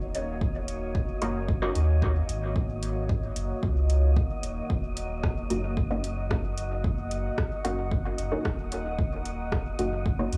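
Dub techno with a cavernous, nocturnal mood, cut from a longer piece, where a round, up-front analog bass with tube saturation and a deep, moody ambient pad with chorus hold a sustained Ebm7 as a muted, detuned chord stab with phaser and dub echo drops out from 1.8 to 5.5 seconds, while an airy, wind-like noise texture breathes above a punchy overdriven electronic kick and a deep house kit of metallic hats and rim clicks, all set in a dry, gritty cassette-tape sound.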